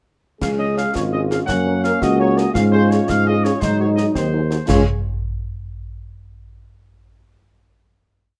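An up-front tuba anchors this brief, rousing military-style march for wind band, placing a warm bass on the beats and holding sustained notes underneath. The trumpet section carries the melody from 0.4 seconds, mellow and tight with light vibrato, though it sits distant and roomy in the blend. Beneath it, a clear solo euphonium sings a counter-melody. A trombone section supplies sustained chords in the background, and the French horn section, entering at 0.6 seconds, adds smooth-topped after-beat chords and held harmonies of its own. Concert snare drum, clash cymbals and concert bass drum keep a spirited march in 6/8, the snare riding over bass drum strokes on the beat, with dark cymbals and a close, dry drum sound. The piece is a single short phrase that settles on a final chord at 4.7 seconds, heard through detailed microphone pickup in a moderate large-studio reverb.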